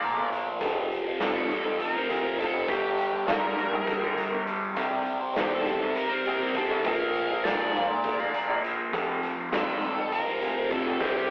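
A fuzz-drenched, double-tracked guitar riff sits up front with distortion and phaser in this mysterious, hypnotic psychedelic rock excerpt in 7/8 at 202 BPM, while a warm, bluesy overdriven lead guitar sings a wah-tinged melody, a brilliant, worn grand piano carries the bass line, and a raw, gritty garage drum kit with punchy kick plays through a rough rehearsal-room sound with tube saturation, telephone-like coloring and a small, wet room reverb over chords moving from Bb through F6, Gm and C7.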